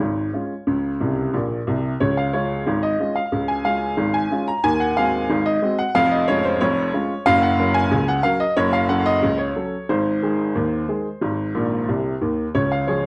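A solo upright piano opens this short, lively ragtime excerpt, its tone clear and woody as it sits up front in a dry, close 1970s-style studio sound with light reverb. Played in Db major at 91 BPM in a straight 2/4, the piece has a playful character, and the piano spans from F1 up to Bb5. A slapback echo on the piano gives its open sound a quick doubled edge. A brief fill at 1.0 seconds leads into the main strain at 2.0 seconds, where the harmony moves from Db through Ab7 over Eb, Db over F, Gb and a colorful Gb minor before reaching Ab. Another fill arrives at 11.5 seconds, settling back onto Db as the cut ends.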